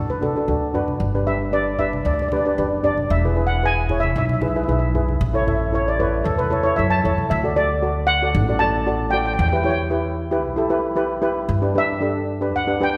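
A straight 4/4 calypso groove at 114 BPM sets a festive, sunny mood in D major, as a shimmering lead steel pan played with soft rubber sticks carries a solo melody through the opening section over a darker, smooth double-seconds pan accompaniment. A woody, thumpy pizzicato upright bass anchors the low end, while low-tuned, thick-skinned congas sit in the background until 7.3 s, when the music moves into a new section over D, Em and G chords. The pans and bass sit up front, yet a wet scoring-stage reverb places the listener further back in the room in this passage cut from a longer piece.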